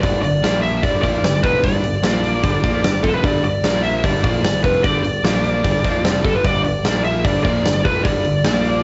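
A smooth, overdriven lead guitar carries a powerful, anthemic melody up front over a huge arena drum kit with a punchy kick and medium-tuned snare, all five parts playing together from the start of this 8.8-second hard rock cut at 150 BPM in 4/4. Behind them, a bright distorted electric guitar and a hollow-bodied, overdriven semi-hollow guitar share a riff over G5 and Bb5 power chords, anchored by a modern, picked electric bass with a direct, punchy tone. The home cassette recording lends the lead, the rhythm guitars and the drums a dull, tape-worn top end inside a moderate booth ambience.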